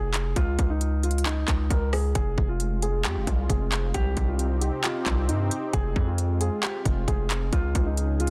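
A distorted 808-style bass dominates this short trap excerpt, its heavy, saturated sine tone carrying a noise layer with a fast attack and decaying tail, sitting up front from the first moment. The hip hop groove moves at 134 BPM in 4/4 with a half-time feel in F minor, setting a menacing, melancholic mood. A trap drum kit enters at 0.1 seconds with a hard-clipped kick, crisp hi-hats, handclaps and rim clicks, all electronic and placed forward in the mix. Above them, a dark baby grand piano plays a mellow, intimate melody through a low-pass filter, its short sustain and audible action noise giving it a natural, close character. At 2.2 seconds a sweeping resonant pad of detuned sawtooth tones joins with sustained chords, its slow attack, filter swell, chorus and long release lending an airy, evolving backdrop as the harmony moves from Dbsus2 through Fm and Cm. The dry, dense and heavily limited master keeps the whole cut tight and forceful.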